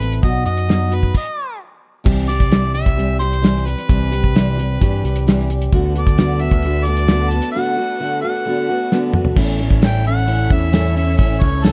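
Wistful and reflective, this folk rock and heartland rock passage, cut from a longer piece, sets a bright harmonica melody with light vibrato and scooped notes over a picked steel-string acoustic guitar with fresh strings and audible finger squeak, a round, punchy electric bass and a damped 70s drum kit with a tight kick and rolled-off top. After an early stop, a lush bowed string section enters in the background at 5.7 s, and following a break capped by a drum fill at 8.9 s, a jingly, very quiet tambourine joins at 9.8 s. The production is dark and warm, wrapped in studio reverb.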